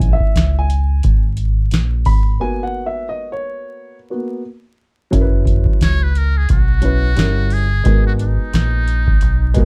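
A buzzy, metal-muted trumpet with vibrato and a smooth top enters at 5.8 s for a jazz-style solo, its slapback echo floating over a cool, nocturnal jazz-hop groove with a swung feel. Beneath it, a dark, intimate baby grand with audible action noise and short sustain plays mellow extended chords, leading the opening of this cut-from-a-longer-piece. A round, punchy dub bass and a booming analog drum machine with a deep kick, crisp snare and metallic hats sit up front in a dry, dark mix dusted with vinyl crackle.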